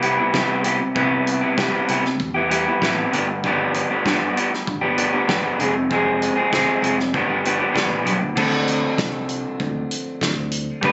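An electric guitar through a small old amp sits up front, playing a slightly broken-up, lo-fi riff with a dark, picked tone that stretches from F2 to B4. This carefree yet wistful indie rock moves at 97 BPM in a straight 4/4, tuned a touch high at A4 = 441 Hz. A picked electric bass adds a round, warm low end beneath it, while a loose acoustic drum kit plays kick, snare, hi-hat and crash with a tight kick, a medium-tuned snare and shadowy cymbals with a rolled-off top. The harmony moves from Cmaj7 through G7 and Fm and back to G7, and a new section opens on Dm7 at 8.4 seconds. Captured on a phone in a club room with light reverb and a muffled top end, this 10.9-second clip is cut from a longer piece.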